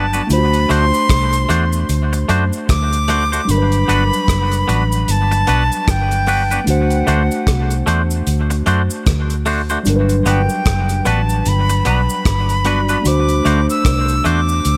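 A laid-back 75 BPM groove in 4/4 with a 60% swing on the sixteenths sets this smooth, sweet lovers rock reggae cut, taken from a longer piece in G major and rocking between D7 and Gmaj7. A damped 70s drum kit with a tight kick, hi-hat and rim click sits dry and mid-forward under a touch of gated reverb, while a round, foam-muted fingered electric bass holds the bottom up front, dark and amped. A mellow tine electric piano fills in the harmony with a clean, direct tone, and a twangy electric guitar adds bright, clean picked stabs until 14.4 seconds, both carrying tape echo. On top, a breathy jazz flute sings the melody with vibrato and a reedy, tongued edge, its tape echo trailing each phrase. Cabasa rustles in the background, and the whole track sits in a small room with light reverb.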